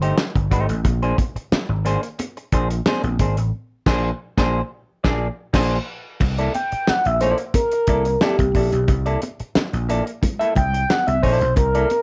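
A smooth, expressive synth lead takes the spotlight once it enters at 6.5 seconds, its sawtooth-and-triangle tone sitting up front with chorus, plate reverb, vibrato and sustained notes over the closing stretch of this strutting funk cut. Beneath it, a growly, punchy slap bass anchors the low end, while a clean, hollow-body semi-hollow electric guitar adds dark, scooped chordal accompaniment moving from F9 to Bb9 before the harmony shifts to C13 as the solo section begins. A soul drum kit with a fat snare, tight kick and dark cymbals drives the straight groove, and congas with a bright, high-tuned skin join at 0.8 seconds, sitting close and dry in the background. Partway through the opening section the band hits a shared accent before handing the stage to the synth. A modest small-room ambience gives the whole a warm, tight, funky feel.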